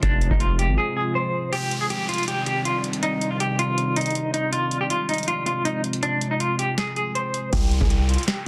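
A half-time trap pulse from a booming analog drum machine, its deep kick, crisp snare, metallic hats and crash roughened by 12-bit sampler grit, drives this dark, eerie hip hop excerpt and drops out briefly at 0.8 s, while a heavy, saturated 808-style bass hits only at the opening and again from 7.5 s, a clean, hollow-bodied semi-hollow electric guitar carries the melody through tremolo and a low-pass filter over a moody detuned sawtooth pad with chorus and reverb, and an electronic downlifter sits within light digital ambience in a dense, heavily limited modern master.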